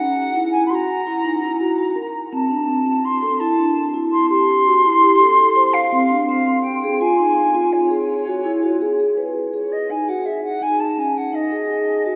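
A straight 5/4 pulse at 167 BPM drives this contemporary instrumental excerpt, giving it an urgent yet pensive character. A wooden flute carries the melody from 0.0 to 12.2 seconds, its tone airy and woody, with vibrato and a soft attack. Beneath it, a vibraphone struck with soft mallets plays arpeggios throughout, sounding metallic and ringing but mellow, with its motor off and a slightly boxy, close presence. The harmony moves restlessly through F#, Am, Fm and C#5 before shifting at 9.5 seconds into a new passage built on C#sus2 and G#5. A long cathedral reverb wraps the performance, placing it in the resonant space of a church or concert hall.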